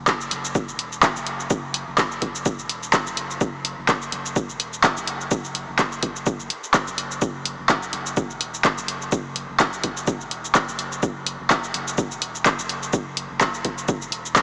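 Clinical and sparse, this short cut from a longer minimal techno piece runs at 126 BPM in 4/4 with swung sixteenths. A punchy, up-front electronic kick and a tape-warm analog drum machine playing handclaps, hi-hat and shaker drive the groove from 0.1 seconds. Beneath them sits a round, deep, dark analog bass between E1 and F#1, with a fast attack, sustained notes, a filter sweep and sidechain pumping. The whole mix is soaked in a dreamy cathedral reverb and heard through a small-speaker sound.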